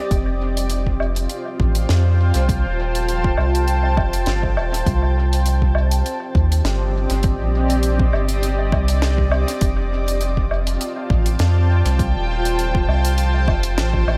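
A lightly swung 4/4 groove at 101 BPM carries this peaceful, hazy ambient dub cut from a longer piece in F mixolydian, where a deep, overdriven electronic kick and a tight metal kit of hi-hat, medium-tuned snare and woodblock soaked in dub echo play alongside a round, up-front sub bass and a cloudy, evolving granular pad with gritty 12-bit sampler texture and built-in reverb, its sustained chords moving from F7 to Cm7 at 4.9 seconds and back to F7 at 9.6 seconds in a small room ambience.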